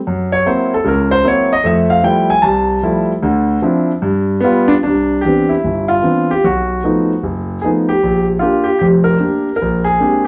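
Solo jazz with a relaxed, swinging mood, heard as a short fragment of a longer piece, where a lone concert grand piano plays from 0.1 to 10.3 seconds with a loose rubato lilt over a swung eighth-note feel. The piano sounds warm and open, sitting up front with a deep bass register, and moves through rich extended harmonies such as F#7#11, Fmaj9 and Dm9 before shifting at 4.9 seconds toward Cmaj9, B7#11 and a closing Bb13. A moderate reverb from a large studio room surrounds the instrument, giving the live performance a natural sense of space.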